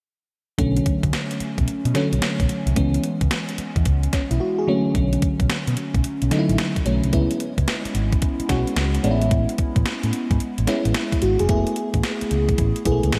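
A lush, detuned FM electric piano with a soft pad layer, dressed in chorus and phaser, sits up front in this slick, bouncy new jack swing excerpt at 110 BPM with a swung 16th feel in B dorian, backed by a dark, round picked electric bass and a thumpy, overdriven 12-bit drum machine playing hi-hat, kick and snare, the mix soaked in dreamy hall reverb as it moves through chords such as Bm9, C#m7 and Amaj9, with a brief silent gap at 4.4 seconds before the second section.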